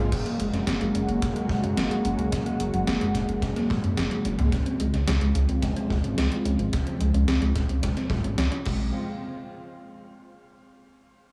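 Set in light small-room ambience, this moody, cinematic synthwave passage pairs a lush, detuned unison pad carrying sustained chords under a filter sweep, shimmer reverb and sidechain pumping with a round, tine-like FM pluck tracing arpeggios in the background, an up-front, glossy chorused synth bass with tube saturation, an overdriven gated 80s digital drum machine of crash, hi-hat, toms and a gated-reverb snare, and a punchy, dark kick drum.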